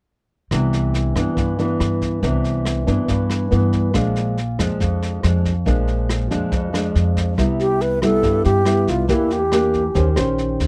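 An airy, warm alto flute with a soft attack, vibrato and a slightly unsteady quality stands out, entering close and up front at 7.6 seconds to carry the melody until 10.2 seconds. This breezy, sunny bossa nova fragment rests on a thumb-plucked, classical-style nylon-string guitar, also placed up front, that comps through chords moving from Cmaj9 to Bb7 and later through Cmaj7, Em7b5 and Eb6. A woody pizzicato upright bass on steel strings holds the low end, while a vintage brush kit with a punchy kick, rim click, medium-tuned snare and rolled-off top sits a little further back in a studio room. Guitar, bass and drums play together from 0.5 seconds throughout, and the flute arrives shortly after the second section begins. The sound is dry and close, with little reverb, in the manner of a 1970s studio session, and the piece is cut from a longer performance.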